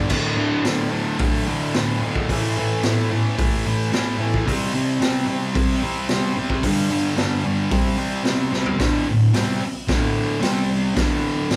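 A thick fuzz guitar opens the clip, playing a swaggering riff of power chords on D, A, C and G that is bright, distorted and double-tracked, sitting up front in the mix. A raw garage drum kit joins at 0.1 seconds with crash cymbal, hi-hat, kick, snare and toms, its high-tuned snare and boomy kick sounding gritty and saturated with a rolled-off top. The rowdy garage rock groove moves at a straight 110 BPM in 4/4, with the band captured playing live in one large studio room that adds a moderate reverb. A drum fill at 8.5 seconds leads into a new section at 8.8 seconds, where the riff returns to D and shifts between C and D chords. This brief clip is cut from a longer piece and stops at 11.6 seconds.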